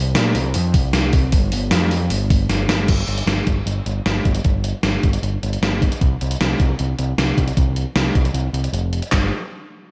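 Up front in a light reverb, this cut from a longer indie rock piece pairs a growling, overdriven picked electric bass with a gated 80s digital drum machine, whose thumpy kick and gated-reverb snare sound re-recorded in a large room. At 154 BPM in straight 4/4, the mood is bittersweet and cool, with crash cymbal, handclaps and hi-hat filling out the electronic, sampler-style kit. A drum fill at 2.5 seconds leads into a new section, and a break arrives at 8.3 seconds before the bass stops at 9.3 seconds.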